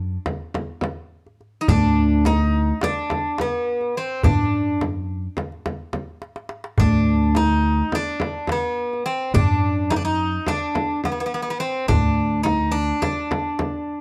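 A pizzicato upright bass opens this festive Turkish makam ensemble piece in a straight 9/8, its steel strings giving a woody, growly, dark tone as it holds to a low, narrow span. At 0.3 seconds a clay-shell darbuka struck with hard hands and a frame drum played with soft hands join, both close and dry, with the darbuka sitting in the background. At 1.6 seconds a bright, picked Greek bouzouki arrives up front, its metallic double strings, some doubled at the octave, carrying the melody in a plate reverb. A drum fill runs from 6.2 to 6.8 seconds. The dark, warm production adds a light reverb, and the passage is cut from a longer piece.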